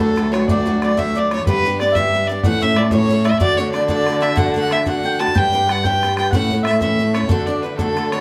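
A rich, smooth fiddle leads up front with light vibrato, carrying the melody of this cheerful, lively Celtic slide in D major at 124 BPM in 12/8, with a woody, double-strung mandolin in the background and a very quiet, reedy accordion adding mellow second lines. Underneath, a picked old ladder-braced acoustic guitar with a boxy, old-string tone supplies the accompaniment, while a dark, nasal cello with vibrato and portamento holds the bass and a damped, tight bodhran sounds distant. The whole 8.2-second excerpt, cut from a longer piece, sits in a moderate small room.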